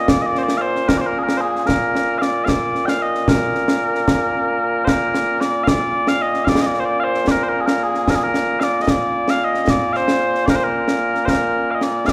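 Ceremonial and proud, this short excerpt of Scottish traditional pipe music moves at 75 BPM in a straight 6/8 in Bb mixolydian, with mellow, sweet small bagpipes carrying a continuous, vibrato-touched solo melody up front from 0.0 seconds while concert snare and bass drum, with dark cymbals, enter at 0.1 seconds alongside it, all heard in a moderate recital-hall reverb across two statements of the same section.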